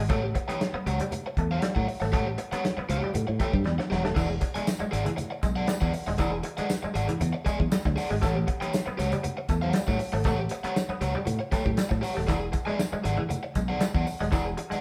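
A straight 4/4 funk groove at 118 BPM struts with energy in E mixolydian, as a dark, damped 70s drum kit with a tight kick and a fill at 3.7 seconds drives a growly, punchy fingered bass, a twangy clean electric guitar riff, up-front overdriven electric guitar accompaniment treated with spring reverb, very quiet ringing congas, and a jingly tambourine that joins in the background at 4.2 seconds, the band heard live in one room with a wet studio reverb as the harmony moves between A13 and E9 in this cut from a longer piece.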